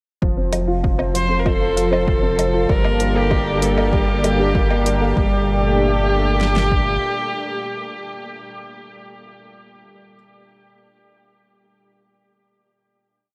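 A single bowed viola carries the melody from 1.2 s, rich and expressive with vibrato and portamento, set up front yet sounding distant through a diffuse ambient delay, while a dark, mellow concert grand piano repeats a six-step arpeggiated riff that drifts against the bar through analog chorus and the same delay. In this hypnotic, melancholic piano and strings electronica piece, a lush, thick, warbling sawtooth unison pad with chorus and sidechain pumping sustains chords under a filter sweep during the build-up, alongside a very quiet, soft, round pluck arpeggio in a twelve-step loop and a deep sine sub bass holding pumping roots. An overdriven deep house kit drives a punchy four-on-the-floor kick and fat snare, with a restrained hi-hat and woodblock pulse in the background, before everything dissolves into a final chord at 5.2 s within a dreamy mix soaked in huge reverb.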